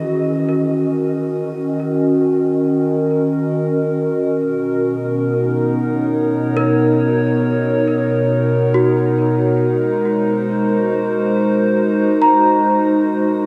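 A warbly, tape-like pad sits up front in this serene, reflective ambient piece, holding sustained chords with a slow attack and long release. Its square and triangle tones are softened by chorus, built-in reverb and shimmer reverb into a nostalgic, lo-fi haze. At a lower level, a worn celesta plays delicate arpeggios, its bell-like, sweet tone struck by hard felt hammers and sounding slightly out of tune, carried on delay and shimmer reverb. Both parts play throughout this short excerpt, which is cut from a longer piece and moves in 3/4, with the harmony drifting from Ebm7 to Bmaj7 at 4.4 seconds and on to Ab7 at 9.6 seconds. A huge, wet ambient reverb surrounds the dark, warm production.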